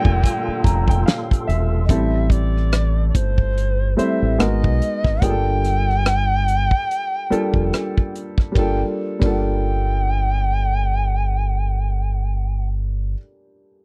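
A sultry, late-night neo-soul and R&B excerpt at 72 BPM in G dorian opens with a fat, lightly overdriven tonewheel organ turning on a slow rotary speaker and distant horn stabs, both gone by 1.9 seconds, while a woody upright piano plays a fill, a tight-kicked soul drum kit with dark cymbals drives until 9.4 seconds, a round, punchy dub bass holds the low end, and a reedy, airy shakuhachi carries the melody, all in a dry, close 1970s-style studio sound.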